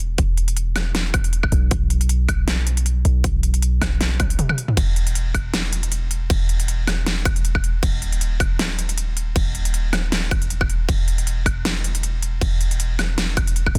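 A half-time groove in 4/4 drives this brief future bass passage, with a light swing on the sixteenths giving it a gentle lilt, and the mood is lush and bright. A deep, boomy 808-style bass with a sine-like tone sits up front from the very start, its fast attack and decaying, mellow notes pumping through sidechain compression. From 0.2 seconds a punchy, layered electronic kick joins alongside a big-room dance drum kit that is also placed up front, built around a huge snare and crisp hi-hats, with ride cymbal, toms and woodblock adding color. A short drum fill between 4.2 and 4.8 seconds breaks up the pattern before the groove carries on through the single section. The drums carry a tape-warm, produced character, while digital ambience and a dense, heavily limited modern master keep the sound polished and full.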